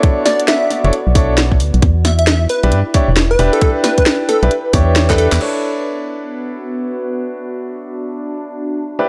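Clear, intimate baby grand piano stabs open this skippy, moody two-step garage excerpt, carrying audible action noise and a vintage 12-bit sampler grit with digital delay. They sit over an overdriven, up-front drum section: a tight electronic kick and a garage kit with a cracking snare, handclaps, hi-hat and crash cymbal, all swung in a bouncy 16th-note feel. Beneath them, a warbling, nostalgic tape-like pad adds lo-fi colour through chorus, phaser and sidechain pumping. A punchy, catchy unison lead of detuned square and sine tones with a noise layer, vibrato and a moving notch arrives almost at once. It is joined by a hollow, percussive organ-like FM bass whose dark, decaying notes sit up front with tube saturation, while the chords move from Bm11 to Em7. A drum fill and a band accent close the first section. The second section begins at 5.4 seconds back on Bm11, and once the kit drops out just after, only the piano and the mellow pad remain in light digital ambience.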